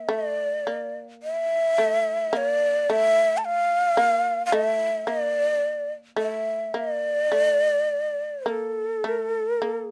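In a slow, rubato 4/4 at around 52-56 BPM, this calm, austere passage of Japanese traditional chamber music in A miyako bushi sets a breathy, mellow bamboo shakuhachi up front, singing an expressive melody with vibrato and soft attacks, while a quieter plectrum-plucked shamisen adds a buzzing, percussive second line beneath it, all captured with close, detailed microphones and light reverb in a short excerpt cut from a longer piece.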